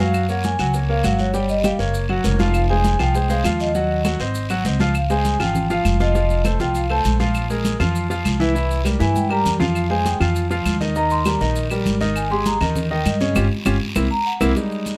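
From 0.0 seconds, this fiery, driving slice of Afro-Cuban jazz opens with a soft-mallet vibraphone carrying the melody as a solo, its metallic, ringing tone played with the motor off and set in a plate reverb. Beside it, an up-front grand piano supplies clear, intimate accompaniment, with its action noise audible. An up-front pizzicato upright bass with steel strings gives a woody, warm low end. The percussion bed sits mostly in the background: bright, thin-skinned congas, claves, grainy, compressed and saturated maracas, and a raspy guiro heard in a live room. A brief fill arrives at 8.9 seconds, and the band hits an accent together from 13.4 seconds over chords built on rich sevenths, ninths and suspended harmonies. The close, detailed recording carries only a light reverb overall and is cut from a longer piece.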